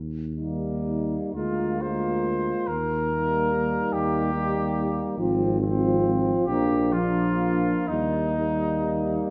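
Tender and warm, this brief excerpt from a slow, rubato hymn-like classical piece for brass band in 6/8 opens on a mellow tuba bass, joined almost at once by a soft-attacked French horn section on the second line, a clear, vintage-toned trombone section and a dark, smooth-topped solo trombone in accompaniment, before a distant, roomy cornet takes the melody at 1.4 seconds, every part carrying a light vibrato within a moderate scoring-stage reverb.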